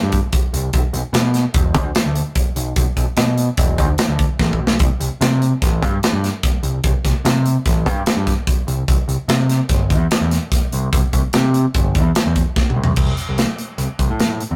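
A growling, overdriven picked electric bass anchors this bright, playful math rock and midwest emo excerpt in G major, driving an odd 5/4 groove at 147 BPM against an up-front, punchy modern studio drum kit with bright cymbals and a medium-tuned snare, with drum fills at 4.4 and 12.6 seconds before a new section arrives at 13.0 seconds, all captured as a rough rehearsal-room recording with tube saturation and light reverb.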